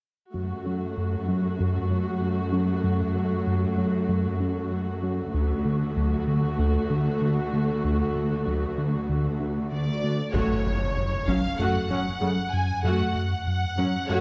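Opening at 0.3 s, this excerpt of a futuristic, vast hybrid orchestral and electronic film score in F# minor at 96 BPM pairs an up-front, vibrato-rich viola section and lush bowed cellos with a saturated sawtooth synth bass riff and very quiet, dark, ringing harp-like synth pluck arpeggios over F#m and D, then a smooth-topped violin section carries the melody from 9.7 s, and at 10.3 s heavy-stick taiko drums and an electronic impact sound in the background, the whole ensemble heard from further back in a wet recital hall.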